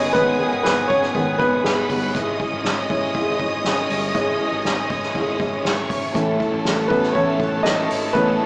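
Driving and earnest, this short piano-driven pop passage moves in a straight 4/4 and is cut from a longer piece. A clear, intimate grand piano sits up front as the featured voice, its natural tone carrying audible action noise as it moves through G#m, C#m and A. Beneath it, a full-bodied jumbo acoustic guitar fingerpicks a riff in the background, while an overdriven electric bass adds a dark, round, punchy low end. A rich, smooth violin section carries a distant second line with even vibrato, and a woody string section holds lush bowed chords close but tucked behind. The soft-mallet drum kit enters at 0.1 seconds, sounding roomy and far off with a punchy kick and a medium-tuned snare, and the whole band comes across as playing live in one room, heard through a small speaker in a moderate large reverb.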